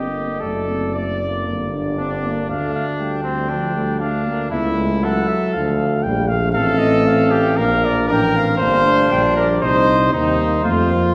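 This triumphant classical brass quintet excerpt opens with all five players together at 118 BPM in 4/4, moving with a flexible rubato feel and tuned to A4 = 439 Hz. The cornet carries the melody between C5 and G5 with a soft attack and light vibrato, while the clear flugelhorn sits up front on a second line from C4 to D5. Beneath them, the dark, close-miked euphonium with light vibrato and the warm French horn hold accompanying parts further in the background. The bass trombone anchors the low end from F#1 to F2, up front with light vibrato and a smooth top. The harmony passes through D/F#, Gm and A/C# before settling into Bb major at 6.5 s and ending on F at 10.6 s. The group is heard from further back on a scoring stage, with a lush 1.8-second reverb that lends the ensemble a broad, ceremonial glow.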